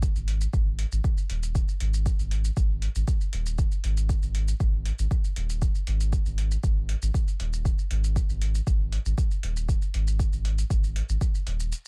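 An overdriven electronic kick drum stands out most, deep, layered and up front, with a small-room grit that anchors this hypnotic, cavernous dub techno cut from a longer piece. Beneath it a soft dub sub bass moves between D#1 and G#1, its round triangle and square-wave tone sustained after a fast attack, breathing with sidechain pumping. A sampler-style electronic shaker and hi-hat sit far back in the mix, compressed, pitched down and muffled. The groove runs at 118 BPM in a straight 4/4, with little reverb keeping the parts dry and close. The kick stops at 11.3 seconds, and a break arrives at 11.7 seconds as the bass falls away, leaving the shaker and hi-hat to finish at 11.9 seconds.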